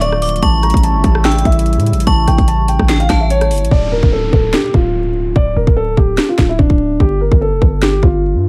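Melancholic and menacing, this brief cut from a longer trap-style hip hop piece moves with a half-time feel under a bed of vinyl crackle. A dark, mellow grand piano carries the melody up front, its intimate, vintage tone marked by audible action noise. For the opening 3.7 seconds, a ringing, inharmonic FM bell with chorus and delay adds a bright second line high above, while a detuned sawtooth pad holds slow-attack sustained chords beneath. A hard-hitting 808-style bass with a sine body, a noise layer and a punchy, decaying attack sits up front alongside the electronic trap kit, whose hard-clipped kick, sharp snare, rim click and metallic hats drive the groove. From 3.7 seconds the hi-hats drop out, and a downlifter sweeps through until 7.0 seconds as the harmony moves from A7 to Dm and finally G5, with the drums stopping at 8.1 seconds.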